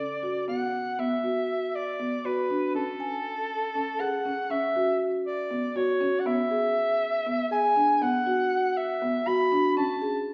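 A breathy, intimate soprano saxophone carries the melody with vibrato over woody, round soft-mallet marimba arpeggios from the very first second. This shimmering, hopeful contemporary instrumental fragment moves in 7/8 at 239 BPM in eighths through chords from Dmaj7 and Bm to Amaj7 and E7, both up-front parts bathed in the lingering reverb of a recital hall.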